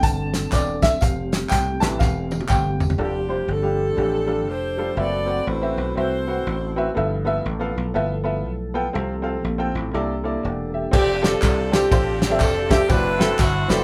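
A live-in-one-room sound with moderate studio ambience frames this uptempo gospel excerpt in F major at 121 BPM, swung and reverent yet uplifting, with a clear, worn grand piano up front playing a solo over the opening three seconds while a soft, flute-like tonewheel organ holds sustained chords in the background through a slow rotary speaker and a bright, punchy thumbed slap bass runs throughout. A warm soul drum kit with dark cymbals and a fat snare, joined by vintage, band-limited tambourine, egg shaker and group handclaps, plays through the opening three seconds, closing with a drum fill from 2.0 to 3.0 seconds, and returns at 10.9 seconds. An edgy, close-miked saxophone section with vibrato carries the melody from 3.0 to 6.9 seconds and again from 10.9 seconds, over rich extended chords such as Fmaj9, D13/F# and G13.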